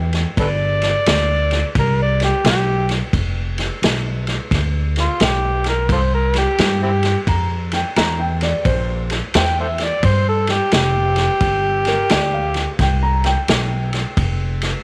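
A swaggering, soulful electric blues shuffle opens on a growly, woody upright bass and a brief touch of dark, mellow upright piano, with a vintage drum kit of punchy kick, medium-tuned snare and dark ride cymbal joining at once. From 0.4 seconds an overdriven, gritty harmonica takes the lead up front, its amplified tone full of light vibrato, scooped notes and tongue slaps in a jazz-style solo, while the short-sustain piano returns as a second line at 7.3 seconds. The chords move from G7 to C7 and back to G7 in a small room with light reverb, in a fragment cut from a longer piece.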